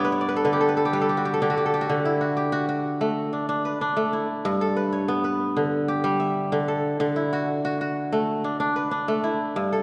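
A solo kora rings out up front in this short excerpt of West African traditional music, its bright, crisp fingerpicked strings carrying a joyful, hypnotic mood. The piece moves at 94 BPM in a straight 4/4 feel, set in D major. The kora opens with a fill over the first 1.9 seconds, then settles into a cycle that alternates between G and D chords. Its range spans from G2 up to G5, giving the single instrument both a low foundation and sparkling high notes. A wet concert hall reverb, with a 2.5-second decay, surrounds the acoustic sound with a spacious, church-like resonance.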